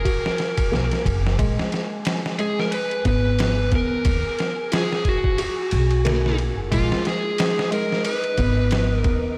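A dark, overdriven slide guitar opens this smoky, hypnotic trip hop excerpt with a tape-echoed melody, joined at once by soft, felt-muted upright piano arpeggios and a breathy, wind-like tuned noise drifting in the background through lush chorus. Gritty, pitched-down sampler drums with a thumpy kick, snare and ride arrive at 0.1 seconds in a swung 90 BPM groove, and a woody pizzicato upright bass enters up front at 0.7 seconds. The chords move through B5, Abm, Ebsus2 and Bb7sus4, all set in a dreamy mix soaked in a 2.8-second hall reverb.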